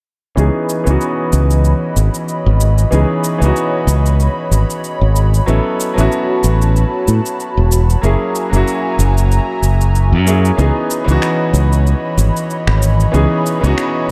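Smooth and warm, this sunset chillout excerpt moves at 94 BPM in 4/4 with a 16th-note swing, set in C# minor and cut from a longer piece. A bright concert grand piano carries the accompaniment, its brilliant tone and deep bass softened by a low-pass filter and trailed by delay. An airy, breathy pad enters at 0.6 seconds with sustained chords, its detuned sawtooth character, noise layer, slow attack and long release given extra shimmer by chorus. A punchy, direct fingered electric bass sits up front as the loudest part, while an electronic shaker and finger snaps add a tape-tinged, produced pulse beneath. The harmony moves from C#m9 through A69 and F#9 before returning to C#m9 at 10.6 seconds, all framed by light digital ambience and a dark overall production.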